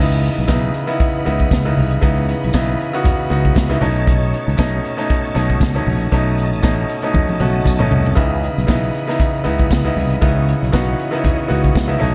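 A lightly swung sixteenth-note feel drives this danceable disco groove in 4/4, carried by a vintage acoustic drum kit with a punchy kick, medium-tuned snare, hi-hat and toms, its top end rolled off. Underneath, a fingered electric bass stays low and warm, while a bright grand piano sits up front as accompaniment, brilliant and intimate, with audible action noise and long sustain. Further back, an overdriven tonewheel organ holds full, gritty sustained chords, colored by chorus vibrato, key click and a slow rotary speaker. Congas with a thick, low-tuned skin and hard hands join very quietly around 0.5 seconds, alongside a close, jingly tambourine. The harmony moves from C#m9 to B9 and back, with a drum fill from 7.1 seconds leading into the return of C#m9, all within a small room ambience in this driving excerpt cut from a longer piece.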